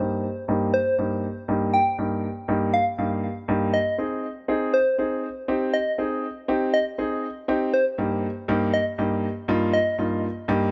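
Light reverb and studio ambience frame this euphoric, upbeat dance-pop build-up at 120 BPM, cut from a longer piece: an intimate, up-front concert grand piano with audible action noise and deep bass carries the accompaniment through a filter sweep over Eb/G and Ab chords, while from 0.7 seconds a round, warbling, vintage FM synth lead with a keys-like, decaying tone sings the melody through chorus, tremolo and tape echo.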